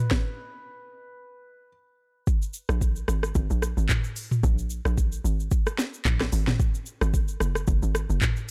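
Deep and late-night, this amapiano fragment opens with a clear, long-sustaining grand piano melody touched by digital delay that ends by 1.7 seconds, while an up-front electronic afro-pop kit of deep kick, sharp snare, crisp hi-hats, shaker, rim click, handclaps and toms plays from 0.1 seconds with a swung sixteenth-note feel, and a hollow, bouncy log drum bass with a fast attack and mellow decay arrives at 2.7 seconds beneath G#sus2 and F#sus2 chords in a dark, dry production.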